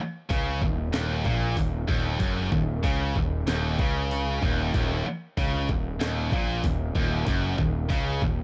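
A relentless, aggressive slice of heavy metal in Eb minor at 95 BPM, set in digital ambience, where a bright, distorted high-gain guitar riff opens alone before a scooped high-gain guitar, a punchy, up-front fuzz bass and a pitched-up, gritty, compressed, tape-warm jungle sampler-style kit of thumpy kick, medium-tuned snare and hi-hat crash in at 0.3 seconds and drive on one Ebm chord until 8.4 seconds.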